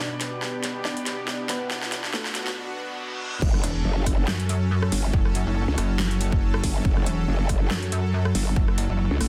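Heavy wobble dubstep at 140 BPM in a half-time feel and F# phrygian, this menacing, aggressive cut opens with a mellow felt-muted upright piano melody with delay, a lush detuned supersaw pad pumping under sidechain, a breathy, airy pad in the background, and a dubstep drum kit with a huge snare and metallic hats, joined at 1.3 seconds by a very quiet riser, reverse cymbal and impact, before the drop at 3.4 seconds brings in a punchy electronic kick, an up-front growling, saturated growl bass, and a heavy, pulsing pluck wobble bass, all under a dense, heavily limited modern master with light reverb.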